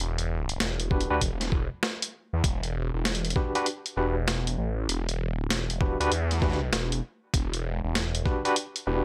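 Glitch hop at 98 BPM in E minor with a 16th-note swing, swaggering and funky over a single Em7 chord in this cut from a longer piece. A thick, swirling detuned saw bass with phaser and tube saturation sits up front from the start, joined at 0.2 seconds by a gritty, compressed sampler-style kit with a high-tuned snare and hi-hat, then at 0.9 seconds by a thumpy electronic kick, both re-recorded in a large room. Also entering at 0.9 seconds, a bright, barky overdriven tine electric piano plays stabs through a combo amp, with fast tremolo, sidechain pumping, a low-pass filter and digital delay, in a dry mix.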